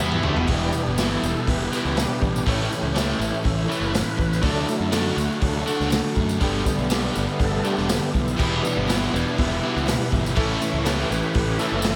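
A big arena sound bathed in lush hall reverb carries this gritty, swaggering classic rock excerpt, where a vintage drum kit with a punchy kick and dark cymbals opens on a fill; a fuzzy fingered bass sits beneath crunchy and compressed overdriven guitar riffs, one of them with slapback echo; a biting double-tracked guitar drops out at 0.5 seconds and returns at 8.4 seconds; a tonewheel organ holds thick sustained chords through a slow rotary speaker; and a jingly, distant tambourine, a very quiet clear baby grand piano and a faint, fresh-stringed steel-string acoustic guitar fill in the background over chords moving from Em through A, D and Gadd9.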